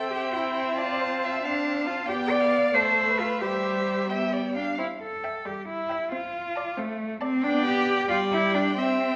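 In a quick 6/8 metre, this urgent, restless fragment of a classical-period string quartet movement sets a distant, expressive first violin melody, sung with vibrato and portamento, above a warm, smooth-topped second violin line, while a close, soft-attacked viola accompaniment and a rich, even cello bass sit up front, each part bowed by a single player in a reverberant recital hall.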